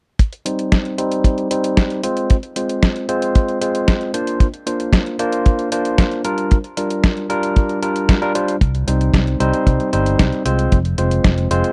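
A straight 4/4 italo disco groove, melodramatic and danceable, is driven by a dry, dark, up-front kick drum and a detuned 8-bit digital drum machine, whose sampler-style hi-hat and medium-tuned snare sound tape-warm and re-recorded in a large room. Barky, bright tine electric piano stabs sit up front through a combo amp, shaped by a low-pass filter sweep and tape echo over a Cm, Fm, Gm7 progression. A growly, amped fingered electric bass joins at 8.6 seconds in this close, 1970s-style studio recording cut from a longer piece.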